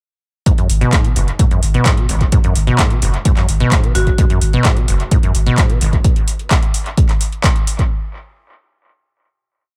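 This is a trippy, hypnotic acid house piece in G# minor pentatonic, running at 129 BPM in a straight 4/4 groove over a single G#m7 chord, with the whole groove starting at 0.5 seconds and lasting until 7.9 seconds. A punchy, up-front electronic kick with an analog character drives a four-on-the-floor pulse. An analog drum machine adds dry, metallic closed and half-open hats and a clap backbeat, touched with analog delay. The centerpiece is a squelchy, resonant sawtooth acid line of 8 steps, with accents and slides, a fast plucked filter attack, analog chorus and delay, sitting beside a round, deep, dark off-beat bass that pumps with sidechain and carries a filter sweep. Around 4.0 seconds a bright, airy marimba struck with hard mallets drops in briefly in the background, its short phrases trailed by analog delay. The mix is dry on reverb but heavy with echo, keeping the low end and drums close and forceful.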